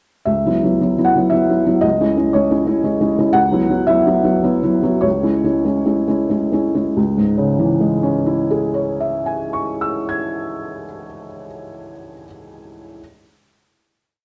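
This neoclassical minimalist piano piece is melancholic and wistful, moving in a rubato 3/4 at 88-120 BPM in C# minor, tuned to A4 = 441 Hz. A felt-muted upright piano plays alone from 0.3 to 13.0 seconds, ranging from C#2 to G#6, with a single-line melody over repeated chords. Its tone is soft, mellow and intimate, set up front with a natural, warm feel. The harmony alternates between Bsus4/C# and C#m, and the tempo slows from 2.6 to 7.0 seconds before a final chord rings from 7.0 to 10.8 seconds. A moderate recital hall reverb and a dark, warm production frame the piano in a reflective space.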